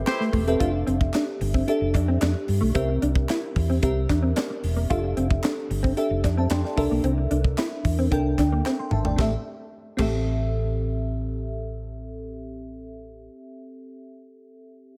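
A bell-like FM electric piano with lush chorus sparkles up front over a round, punchy hollow-body bass, a mellow guitar riff, a tight funk kit with a high-tuned snare, and crisp background handclaps in this slick, urban 1980s jazz-funk pop excerpt, where the guitar, drums and claps stop at 10.1 seconds after a drum fill, leaving the piano and bass in a dreamy plate-reverb haze.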